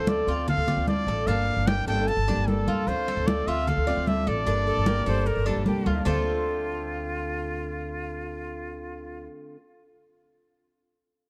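Nostalgic and warm, this short cut from a longer Cuban son and guajira piece moves in a straight 4/4 over a gentle alternation of Dm7 and Gmadd9 chords. A breathy, close-miked trumpet carries the melody up front with a whispered, intimate vibrato and soft attack, then gives way at 5.7 seconds. A bright, metal jazz flute enters at 4.7 seconds on a second line, with a crisp chiff and airy vibrato. Underneath, a picked dreadnought steel-string guitar adds full-bodied accompaniment, while a Cuban tres spins metallic arpeggios from its doubled, partly octave-paired strings. A woody pizzicato upright bass sits prominently in the low end, and high-tuned congas played with soft hands ring in a small room until 6.2 seconds. Light reverb and a dark production give the whole a mellow, close glow.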